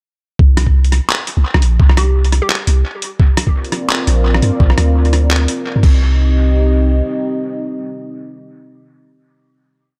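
Tense and spacious, this short half-time drum and bass piece in C minor moves at 171 BPM with a light swing on the sixteenths. A deep, dark 808-style bass enters at 0.4 seconds with long sine notes between Bb1 and G2, sitting up front beside a gritty, thumpy electronic kick that carries the half-time pulse. A quieter sampler-style kit, tape-toned and pitched down, adds a sparse beat of rim clicks, closed hi-hat, handclaps and crash, its hits trailing into dub echo. Around 2.0 seconds a hollow, bouncy square-wave pluck offers a brief phrase on G4, soft in the mix and wrapped in chorus and echo. From 3.5 seconds a moody, detuned analog pad swells in slowly with sustained chords from C4 to Eb5, pumping under sidechain compression as the harmony moves from Bbadd9 to C minor. The drums stop at 5.9 seconds and the bass by 7.0 seconds, leaving the pad to ring alone through the final hit until 9.6 seconds in an echo-heavy digital ambience.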